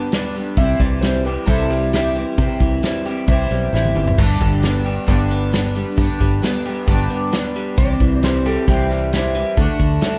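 A dark, warm production with light reverb frames this short, nostalgic open-road cut of folk rock and heartland rock at 133 BPM in 4/4. A shimmering, octave-doubled twelve-string acoustic guitar picks the accompaniment through a lush chorus, alongside a lo-fi, slightly broken-up electric guitar riff with spring reverb. An up-front small-room country drum kit with a punchy kick plays a fill at 3.7 seconds, and a foam-muted fingered bass moves under the G and C chords toward a closing D, while a compressed, dark slide guitar adds a second line from 0.6 seconds and again at 7.8 seconds.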